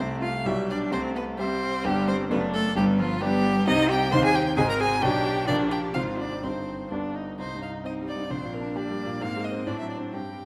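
A rich, smooth violin carries the melody up front in this stormy, urgent classical-period movement for piano quartet, moving briskly at 131 BPM in 2/4 and turning from C major to C minor at 3.7 s. A focused cello with vibrato sings a second line beneath it, while a clear, polished concert grand with deep bass and short sustain gives present accompaniment and an intense, airy-bowed viola fills in from the background. A moderate recital hall reverb surrounds this brief passage, which moves into a new section at 7.4 s.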